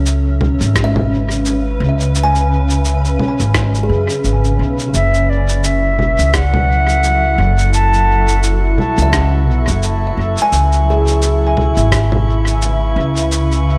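A lightly reverberant, spacious mix opens this deep ambient dub excerpt at 86 BPM in F# minor, with a swung 16th-note feel. A blurred, evolving granular cloud pad holds sustained chords moving from C#m7 to F#m7 and back, while a woody pizzicato upright bass sits up front, and hollow kalimba arpeggios ring through tape echo alongside muffled, pitched-down drums: an overdriven electronic shaker, congas and rim click with dub echo, plus a thumpy, overdriven kick in the background. At 4.9 seconds a reedy, airy concert flute carries the melody until 8.4 seconds, and from 5.5 seconds a glassy, chorused glass-harmonics texture drifts in the background.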